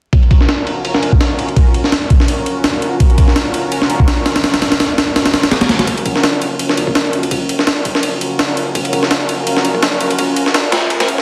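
A gritty, pitched-up breakbeat opens this dark, nostalgic drum and bass excerpt at 167 BPM in Eb minor, its thumpy kick, high-tuned snare and ride sitting up front under a filter sweep, with a lush, detuned sawtooth pad with chorus and phaser holding a Gbmaj7/Db chord behind it. The kick drops out at 5.2 seconds, and from 5.9 seconds the music moves to Ebm7 and builds, with a filter sweep on the pad and a soft, round dub sub bass barely audible underneath. The dense, heavily limited master carries light reverb and vinyl crackle.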